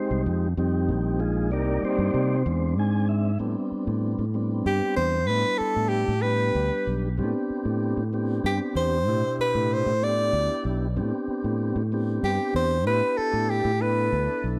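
Set in a straight 6/8 at 63 BPM, counted in dotted quarters, this short excerpt of electric jazz fusion has a nocturnal, funky mood. A soft, flute-like tonewheel organ turns slowly through its rotary speaker from the start, moving through Fm9, Cm9 and E7b13 and playing a brief fill before the music settles into A minor at 3.4 s. Up front, a punchy fingered electric bass sounds direct and amped, holding down the low end. At 4.7 s a close-miked soprano saxophone takes a jazz-style solo with a warm subtone, vibrato and scooped notes, while the chords alternate between Am11 and Em7/A. Light studio reverb gives the trio an intimate space.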